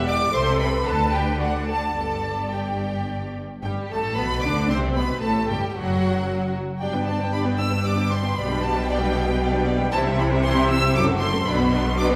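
A graceful, spirited classical-period movement for string orchestra opens with warm second violins, clear violas, focused cellos and rich, up-front double basses bowing in G major at a quick 114 BPM in 3/4, with a flexible rubato feel and a slightly high A4 = 444 Hz tuning. At 0.1 s a clear first violin section takes the melody up front, lush and expressive with vibrato and portamento, moving through harmonies such as G, F#m, C and F#m7b5 before settling on Bm. The ensemble sounds from further back on a scoring stage, bathed in a wet 2.0-second reverb, and the passage is cut from a longer piece.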